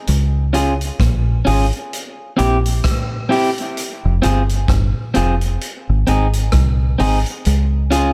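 Meditative and deep, this short dub reggae cut in F minor moves at 65 BPM with a swung sixteenth feel, carried by a dark, round, foam-muted fingered electric bass sitting up front, a vintage acoustic drum kit of hi-hat, rim click and punchy kick in a natural studio room, and a picked, compressed, slightly broken-up electric guitar that enters at 0.5 seconds with dub echo, all cycling through Db, C, Fm and Ab.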